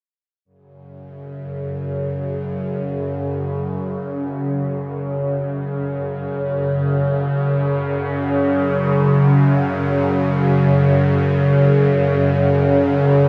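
Dark and ominous, this short cut from a longer dark ambient drone piece in free time, tuned to A4 = 444 Hz, features a lone bowed-like drone entering at 0.9 seconds and holding between F#2 and C#3, its string-like, tense, detuned sawtooth tone with a noise layer, vibrato, slow attack and long release sitting bright and up front, colored by phaser, delay and built-in reverb within a huge, wet ambient space with an 8.3-second decay.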